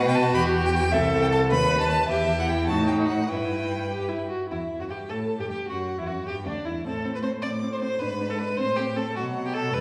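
Restless and urgent, this quick classical-period movement for string quartet drives forward in E minor at 103 beats per minute, counted in dotted quarters of a straight 6/8 and tuned slightly high to A4 = 444 Hz. A dark-toned first violin carries the melody high in its range, shaping it with vibrato and expressive portamento, while the focused second violin spins a supporting line beneath it. The viola fills in a smooth, even accompaniment, and the cello anchors the low bass with its own vibrato and sliding portamento, sitting a touch more present than the others. The harmony circles tensely around E minor, leaning on diminished chords and a dominant before a second statement of the opening phrase begins at 4.5 seconds and pushes toward A minor and a bare B5 at 9.2 seconds. All four players are heard from further back in a reverberant recital hall, giving this short excerpt, cut from a longer piece, a spacious, resonant glow.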